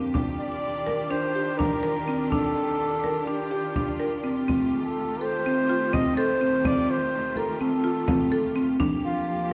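A buzzing, woody marimba struck with hard mallets plays bright arpeggios up front in this hopeful, restless piece of contemporary chamber music in 9/8 at 249 BPM in eighths and F mixolydian, as a warm flugelhorn sings a distant, classical-style melody from 0.4 s, a clear studio string section holds smooth bowed chords with vibrato, and a deep, saturated frame drum played with soft hands sits beneath, the dark recital-hall reverb framing a harmonic path from Ebmaj9 through F9 to Gm7.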